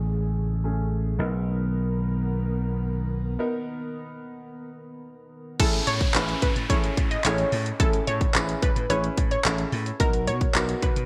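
A straight 4/4 groove at 109 BPM drives this upbeat, carefree dance-pop excerpt, cut from a longer piece with a bright 1980s-style digital sheen and light reverb. From the start, a clear concert grand piano plays accompaniment through subtle chorus, a low-pass filter and sidechain pumping, while an airy, breathy pad holds detuned, mellow chords until 5.6 seconds and a punchy, amped vintage slap bass sits up front underneath. An electronic downlifter sounds in the opening moment, and a break follows at 3.4 seconds before the drop lands at 5.6 seconds. There a pop drum kit arrives with a punchy kick, warm hi-hats, handclaps and crash cymbal under gated reverb, and a round, warbling analog pluck takes the melody with chorus and digital delay. The downlifter returns during the drop, and the harmony shifts between Amaj7 and Bmaj7 throughout.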